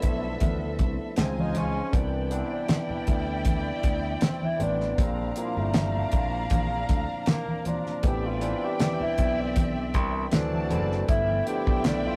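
A relaxed 79 BPM groove in 4/4 with a light sixteenth-note swing sets up this lush, smooth slice of 1970s-style soul in C major, cut from a longer piece. Up front, a damped 70s drum kit lays down a fat snare, tight kick and hi-hat, while a bright, growly fingered electric bass sits low and punchy beneath it, and soft-handed congas with a thick skin join from 0.4 seconds in the background. A barky tine electric piano heard through a combo amp supplies clean accompaniment, and a rich studio violin section adds a bowed second line with soft attack and expressive vibrato. From 1.2 seconds a breathy tenor saxophone takes the melody in a jazz-style solo, its subtone, scooped notes and whispered, intimate tone set at a distance and touched by slapback echo. The harmony drifts through lush extended chords such as Dbmaj9, Cmaj9, Am11 and a rootless G13. A small room reverb and saturation give the whole a rough, rehearsal-room character.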